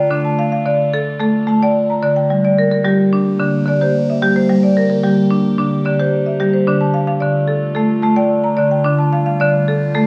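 A wet echo-chamber reverb and small-room ambience give this cassette-tape recording a close, slightly worn sound. This gentle, meditative world piece for tuned percussion moves at 110 BPM in 4/4 with a straight feel, in D minor tuned to A4 = 437 Hz, passing from Dm to Gm at 2.3 seconds and back to Dm at 6.7 seconds. Up front, a woody, vintage, band-limited marimba struck with hard mallets plays percussive arpeggios on rosewood bars, while a quieter, bright, evolving wavetable pad with a sine tone holds sustained chords underneath, morphing through a phaser and its own reverb with a slow attack and long release.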